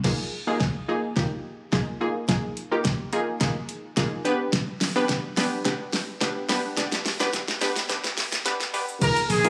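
Dance-pop, confident and energetic, where a detuned sawtooth analog pluck with chorus and sidechain pumping moves from Bb7sus4 to G over an electronic R&B drum kit of knocking kick, fat snare, metallic hats, shaker and crash through a build-up, drum fill and filter sweep, before a roomy horn section with light vibrato enters at 9.0 s and a punchy slap bass lands at 9.3 s, caught on a phone amid club ambience and light reverb.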